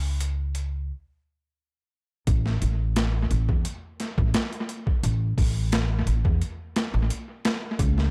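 The recording is dry, with little reverb, yet echo-heavy in the mix. This brooding, dark trip hop excerpt in 4/4 has a straight feel. A pizzicato upright bass opens the piece, woody and up front on steel strings, and sits low in its register. A sampler-style boom bap kit joins at 0.2 s, pitched down, compressed and gritty. It has a thumpy kick, a high-tuned snare and hi-hat, and it is overdriven, high-pass filtered, sent through analog delay and re-recorded in a large room. After a stop from 0.9 to 2.3 s, the second section begins and carries on to the end of the cut.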